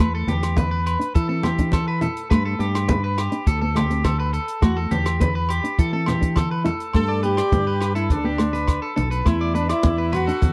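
A clear, tight jazz-style horn section takes the melody at 6.9 seconds, riding over a danceable highlife guitar-band groove at 104 BPM in straight 4/4. Beneath it, a slightly broken-up, twangy electric guitar plays arpeggios through spring reverb and slapback echo, a dark, thumb-plucked nylon-string guitar supplies accompaniment, and a round fingered electric bass sits up front beside a compact cocktail drum kit with a tight kick, hi-hat and rim click. Ringing agogo bells and bright, low-tuned congas add percussion in the background of this dry, close 1970s-style studio recording, a warm passage cut from a longer piece.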